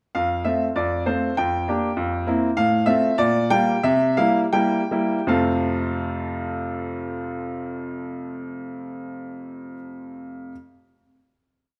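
A bright baby grand piano, up front and full of long sustain, carries this short, graceful and cheerful classical-period sonatina in F major alone, setting a single-line melody over repeated chords. The 2/4 pulse moves with a rubato feel between 79 and 102 BPM, slowing from 2.0 to 5.3 seconds before a brilliant final F chord rings out until 8.3 seconds. Close, detailed miking captures the open tone within a moderate recital-hall reverb.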